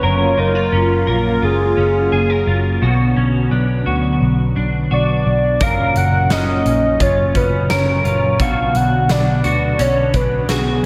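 A mellow, up-front synth lead with a detuned, sub-octave body carries the melody from the start over a swirling, phased analog pad, warm clean electric guitar arpeggios with chorus and delay, and a dark, round, foam-muted picked bass, all moving between two lush chords. At 5.6 seconds a second clean guitar with harmonic tremolo slips in behind, while a big, punchy acoustic drum kit enters with kick, snare and hi-hat. The blissful dream pop passage is soaked in a long, lush hall reverb, and this short cut from a longer piece feels dreamy.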